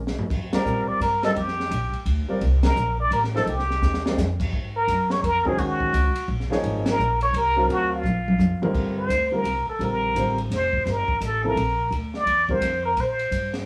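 A small, live room with a short natural ambience holds this intense, spiritual modal jazz excerpt, swinging in 3/4. A woody, growly upright bass sits up front beside a dark, smooth cocktail drum kit with a high-tuned snare and punchy kick, while an intimate grand piano, its action noise audible, voices suspended chords under band accents and drum fills. The plunger-muted trumpet, clear and vintage with a wah-wah tone and scooped notes, carries the melody and then takes an up-front solo from 8.7 seconds over a Gm11 harmony.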